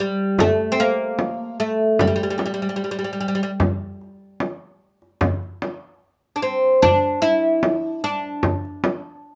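A close, dry frame drum and a woody oud sit up front in a moderate small room, in a short excerpt of a passionate Persian modal ensemble piece in a straight 4/4. The fretless, plectrum-plucked oud carries the melody between G3 and E4 with a deep double-string tone until 8.4 seconds. Beneath it the tight tombak, struck with hard hands, and the frame drum keep the pulse through to the end.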